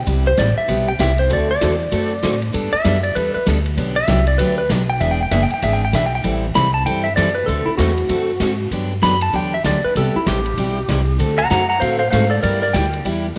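A swung 4/4 at 194 BPM drives this playful western swing excerpt in G major, with a big-band drum kit of punchy kick, medium-tuned snare, hi-hat and ride sounding airy and polished beneath a thumpy, woody pizzicato upright bass placed up front. A bright, twangy lap steel plays a clean, compressed slide second line from the opening through 13.0 seconds, over a full-bodied picked dreadnought acoustic guitar moving through chords such as Am7, D7, Gmaj7, E7 and Cmaj7 before settling on G6. A moderate echo chamber reverb gives the whole band a hall-like sheen.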